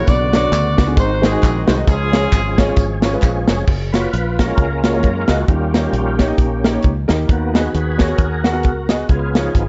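A gritty, overdriven tonewheel organ with fast rotary speaker and chorus vibrato takes a solo from 3.7 s in this soulful, hopeful, swung uptempo gospel excerpt, after an edgy, punchy saxophone section with slapback echo carries the melody until 2.8 s, while a woody upright piano, a direct fingered electric bass and an up-front tight funk drum kit play throughout, and tambourine and handclaps sit in the background until 3.6 s.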